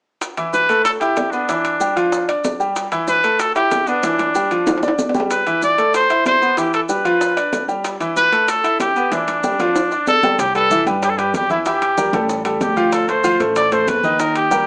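Sunny and danceable, this brisk salsa excerpt at 189 BPM puts a clear, punchy trumpet with scooped notes up front over a bright baby grand piano with audible action noise, while ringing timbales and round bongos keep the groove in the background alongside grainy, close and dry maracas, and a woody pizzicato upright bass and soft, damped congas join at 10.4 seconds, all heard in a moderate studio reverb with a small-speaker sound.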